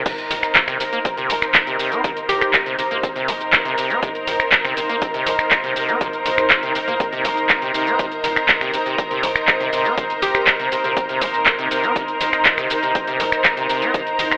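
A narrow, telephone-like sound colours this gritty, driving acid house passage, which sits in a wet digital room and is cut from a longer piece, moving at 121 BPM in a straight 4/4 over a Cm7 chord in C minor. A squelchy, resonant sawtooth acid bass carries the riff with a filter sweep, overdrive, lush chorus and dub echo, while a cloudy, evolving granular pad sits up front, its blurred texture held in its own built-in reverb and sidechain pumping. Beneath them, a vintage string machine holds mellow ensemble chords with ensemble chorus and pumping, and a round, deep analog bass stays dark and low in the background. A punchy electronic kick sits alongside an up-front analog drum machine playing hi-hat, shaker, handclaps, finger snaps, toms and crash cymbal. A hollow, bouncy square-wave pluck, detuned and bright with chorus, cassette tape colour and tape echo, appears only briefly at 2.3 seconds and again at 10.2 seconds.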